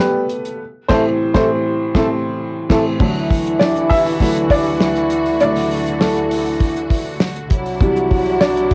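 Hopeful and uplifting, this short piano-driven pop passage, cut from a longer piece, moves in a straight, steady four. A clear, woody upright piano sits up front and carries the accompaniment, its boxy tone and short sustain taking solo turns throughout, while a mellow French horn section adds a distant second line with light vibrato and a roomy, classical character. A damped 70s drum kit enters at 0.3 seconds, dry and close, with a fat snare, tight kick, hi-hat and crash, and the band joins in an accent between 0.6 and 3.0 seconds. At 3.0 seconds the harmony shifts from Cmaj7 and Am to D, and a lush, bowed studio string section arrives with sustained chords, set quietly in the distance with a focused vibrato. Light reverb and the soft grain of a home cassette recording give the whole passage a homespun glow as it settles onto Cadd9 near the close.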